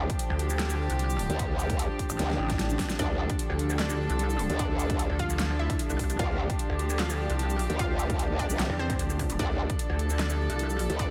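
Distant, reedy chamber strings hold sustained chords in D minor over a growling, formant-filtered growl bass and a warbling, nostalgic tape-like pad, before a punchy electronic kick and a big-room dance kit with a huge overdriven snare, metallic hats, handclaps and shaker drive this menacing, aggressive half-time wobble dubstep at 150 BPM, joined by a heavy, detuned pulsing pluck wobble bass up front, with a drum fill at 2.2 seconds, a very quiet electronic swell at 2.4 seconds, and a bright, delayed unison pluck melody entering at 3.0 seconds in the background of a dreamy, reverb-soaked hall.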